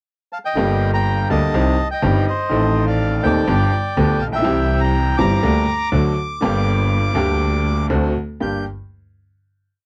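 A reedy, dark bandoneon carries the melody of this sultry, melancholic tango in G minor, singing motif-based song phrases partly doubled in thirds, its vintage, band-limited tone sitting up front from 0.3 seconds. A bright upright piano joins at 0.6 seconds with woody, brilliant chords and audible action noise, playing the tango rhythm of uneven groups of three and two eighths. A single bowed double bass enters alongside it, clear and focused and singing with vibrato in the low register, sharing that same lopsided tango pulse. The piece moves at 122 BPM in 4/4 with a rubato feel, opening on a short pickup before a harmonic path through Gm, Cm, Adim and G7 that turns toward D7 and settles on a final Gm chord at 8.4 seconds. The sound is a dry, close 1970s-style studio recording with little reverb, giving the trio an intimate, up-front presence.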